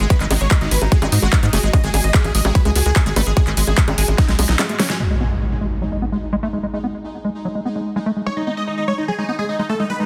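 This psychedelic trance excerpt opens in the middle of a drop at 147 BPM in G# phrygian, with an overdriven, punchy electronic kick up front alongside a big-room dance kit of huge snare, metallic hi-hats, handclaps and bongos. Beneath them a tight sequencer bass drives with a plucked sawtooth-and-square tone, while a squelchy, resonant acid bass riff with chorus and delay pumps with sidechain compression. A huge, thick supersaw carries the melody, detuned and compressed with phaser and delay, and a pulsing gated texture holds sustained chords in the background with chorus and its own reverb. A drum fill from 4.2 seconds and a brief break lead to a band accent, and at 5.0 seconds an up-front impact lands as the drums drop away, leaving the acid riff, the pad and a riser before the supersaw returns at 8.3 seconds. The mood is intense and psychedelic, with a dense, heavily limited modern master and light digital reverb.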